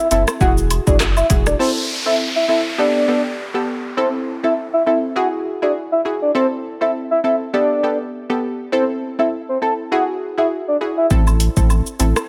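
Dancehall at 101 BPM in A dorian, this short cut from a longer piece has a hypnotic, sultry pull, with a lightly swung sixteenth-note feel. A soft, octave-layered synth lead carries the melody from the start until 11.1 seconds, its dark, rounded tone thickened by a sub octave and shaded with chorus, tremolo, vibrato and delay. Beneath it, a detuned sawtooth pluck with a filter sweep and chorus decays through the accompaniment, running across nearly the whole clip. The electronic drum kit, with its deep kick, metallic hats, handclaps, rim click and shaker, sits up front with a tape-warm sheen alongside a round sine sub bass, and both drop out after the opening moments, returning at 11.1 seconds, while a close, dry cabasa and woodblock part lingers in the background in the opening moments and comes back at 11.3 seconds. In the gap, a downlifter sweeps through from 1.6 to 6.4 seconds as the harmony cycles among Eadd9, Am and Gadd9, all set in light digital ambience.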